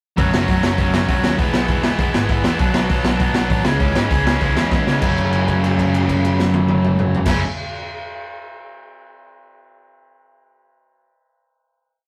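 A rough rehearsal-room recording with tube saturation and a stone-room reverb frames this short, aggressive punk rock piece in F# minor at 198 BPM, moving through F#m, E, Bm and C#m. Up front, a bright cranked stack guitar drives eighth-note barre chords over a background distorted electric guitar's eighth-note power chords, while a growly overdriven picked bass plays driving eighth notes. A gritty garage drum kit with dark cymbals, a punchy kick and a two-step groove plays a fill at 4.7 seconds, leading into a final F#m chord held from 5.0 seconds.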